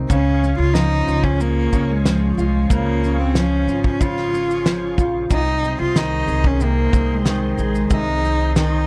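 A loose, straight-feeling indie drum kit in 4/4 sets an easy-going pulse, with a punchy kick, a fat snare and shaker sitting in a pumping studio room. Up front, a woody pizzicato upright bass holds the low end while a double-tracked dreadnought acoustic guitar is fingerpicked underneath. The melody comes from a single bowed cello, played close and intimate, with a soft attack, light vibrato and an airy sul tasto tone that keeps it gentle and warm. In the background, a reedy, clean tonewheel organ holds sustained chords with audible key click, chorus vibrato and a slow rotary speaker. The harmony shifts to a new chord at 5.3 seconds, and a small room ambience gives this carefree acoustic pop fragment, cut from a longer piece, a relaxed, close-knit sound.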